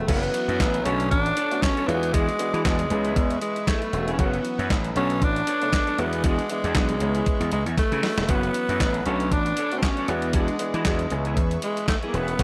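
Early-eighties boogie funk with a danceable, late-night mood and a swung sixteenth-note feel, led by a raspy, scooped alto saxophone with slapback echo, up front over a punchy, overdriven slap bass and a thumpy, crisp 8-bit drum machine of kick, snare, hi-hat, handclaps and crash that carries gated reverb and a drum fill at 7.8 s. In the background sit a worn, short-sustain grand piano and a dark, picked clean electric guitar riff with ensemble chorus, while a very quiet brassy, detuned sawtooth analog pad with ring modulation and vibrato holds sustained chords through a looping progression of extended seventh and ninth chords. The mix is dry, and the recording is cut from a longer piece.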